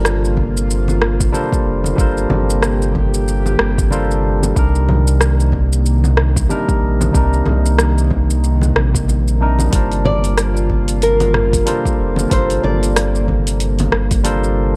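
A barky, lightly overdriven tine electric piano with digital delay, an airy, breathy chorused pad and a round, up-front sub bass open this wistful, relaxed sunset chillout passage in G minor at 93 BPM, with a swung 16th-note feel over Gm11, Cm7 and back to Gm11. A deep, overdriven electronic kick and a layered deep house kit of hi-hat, rim click, shaker and toms settle in alongside soft-handed vintage congas in the background. At 10.1 seconds a small, dark fingerpicked nylon-string guitar adds a brief delayed melody, all within a dark, warm production with light reverb and digital ambience, cut from a longer piece.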